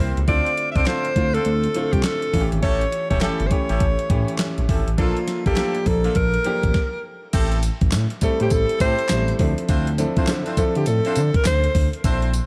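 Bouncy and confident, this swung new jack swing R&B excerpt sets a subtone-laced alto saxophone with scooped notes up front over a crisp 8-bit drum machine with a thumpy kick and fat snare, a gliding sawtooth synth bass with portamento, vintage grand piano accompaniment and tight octave-doubled horn stabs, with digital delay on both the horns and the sax, before the band stops briefly at 6.7 seconds and returns for a second section in a dark, lightly reverberant mix.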